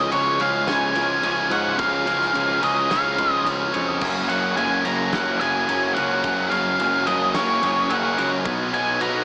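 A dark, fuzzy lead guitar carries the melody up front through this soaring, hopeful post-rock excerpt, its octave fuzz trailed by analog delay, while a biting overdriven guitar riff sits close behind it and a growly fuzz bass anchors the low end. Faint glockenspiel arpeggios sparkle on top, a twangy clean guitar adds quiet arpeggios, and a hushed chamber string section holds soft, sul tasto chords beneath a roomy, distant drum kit with a fat snare and punchy kick. A bright distorted guitar riff joins very quietly at 4.0 seconds as the harmony moves from C# to F#add9 and then Badd9, all set in a large studio reverb with a small-speaker character.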